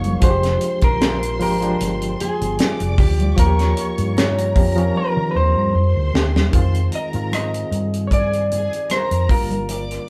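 Lush 1970s-style soul with a bittersweet, silky mood, moving at an unhurried pace with a light sixteenth-note swing. An electric guitar through a small old amp carries the melody from 0.2 seconds, picked, slightly broken-up and lo-fi, sitting up front. Beneath it, a barky, reedy electric piano comps with light overdrive and a fast tremolo heard through its built-in speakers, while a dark, round hollow-body electric bass anchors the low end. A tight funk drum kit with a high-tuned snare, hi-hat, kick and rim click sits forward in a small, natural-sounding room, joined by very quiet ringing congas played with soft hands. A distant violin section adds a lush, bowed second line with vibrato and portamento, and a mellow French horn section holds very quiet sustained chords, the whole band captured live in one room with moderate reverb. A drum fill from 5.0 to 6.5 seconds leads into a new section, and the clip is cut from a longer piece.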